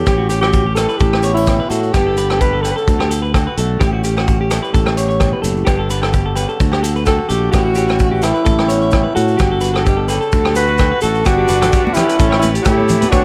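A warm, sunny highlife guitar band groove in A mixolydian at 129 BPM with a light swing, where a close-miked, vibrato-laden alto saxophone sings the melody up front over a round fingered bass, a tight vintage drum kit, a boxy picked acoustic guitar with finger squeak, twangy clean electric guitar arpeggios with slapback echo, ringing agogo bells and grainy maracas, before a raspy, growling trumpet slips in behind at 10.6 seconds and a reedy combo organ and damped congas join at 11.3 and 11.6 seconds as the chords move from A7, G and D to Gmaj7 and Aadd9.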